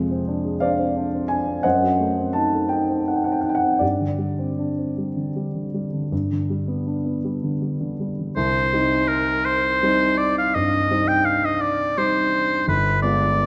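A clear oboe with light vibrato carries the melody in a classical style, entering over the piano at 8.4 s and singing between Bb4 and G5 until the close at 13.5 s. This elegiac, melancholic fragment of a romantic duo for oboe and grand piano sits in C minor, in 12/8 with a rubato feel at roughly 51-60 BPM counted in dotted quarters, with tuning at A4 = 439 Hz. A dark, mellow concert grand piano provides the accompaniment from the start, spanning G1 to A5 with a deep bass, and both instruments sound up front. The opening passage lingers over uneasy harmonies, moving from Dm7b5/F through F#dim7 to a suspended Gsus4 that resolves to G. When the oboe arrives, the harmony settles on Cm before turning to G7b9 near the end. A recital hall reverb with a 1.8-second decay wraps the duo in a spacious, wet ambience.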